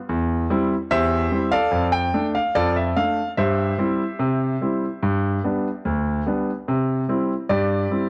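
Ragtime piano in C major, a jaunty, lively fragment cut from a longer piece, moving at 73 BPM in a straight 2/4. A single concert grand plays solo from 0.1 to 8.1 seconds, its clear tone sitting up front with a deep bass and a natural character across a range from D2 to G5. The harmony walks through C/E, Dm/F, C/G and G before arriving on C at 6.7 seconds. The instrument is tuned slightly high, with A4 at 442 Hz. Light reverb adds a touch of space, while the dry, gritty hardware recording carries the grain of cassette tape.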